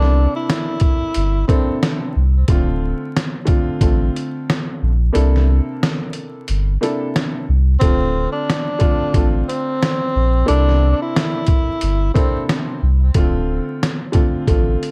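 Dry and dusted with vinyl crackle, this reflective, gritty boom-bap hip-hop excerpt rides a swung, compressed, pitched-down sampler-style drum kit with a thumpy kick that drops out from 5.1 to 7.8 seconds, a deep, full sub bass with octave sitting up front, a dark grand piano with mellow, short-sustained vintage chords moving between C13 and Dm7 through cassette-tape coloring, and a breathy tenor saxophone playing subtone, scooped jazz phrases with light vibrato that appears briefly at the start and returns at 7.8 seconds.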